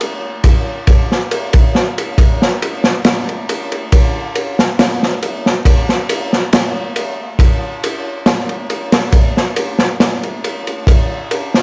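A slow, lightly swung 4/4 groove runs through this trip hop excerpt, carried by a crunchy breakbeat drum kit from 0.0 to 11.6 seconds. The kit pairs a punchy kick and a medium-tuned snare with a dark ride cymbal, and it sits up front in the mix. Its acoustic studio-room character is saturated and gritty, smooth at the edges, with a rolled-off top that keeps the sound dusky. A light reverb and a layer of vinyl crackle add a worn patina, and nothing rises above 10.9 kHz. The mood is melancholic and hypnotic, and the passage is cut from a longer piece.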